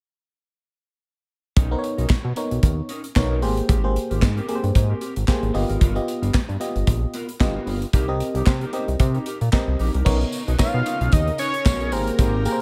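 A lightly swung 113 BPM groove in 4/4 drives this smooth, feel-good early-eighties boogie funk excerpt, where a punchy, up-front drum kit with gated reverb, handclaps and crash joins a glossy, detuned synth bass and a dark, clean chorused guitar riff from 1.6 seconds, with glassy bell-like FM electric piano following at 1.7 seconds, over chords moving from Bmaj9 through Abmaj9, G7alt and Cm7, before a very quiet swirling phased string machine and jingly tambourine arrive at 10.1 seconds and a fat sawtooth lead with vibrato sings the melody from 10.6 seconds.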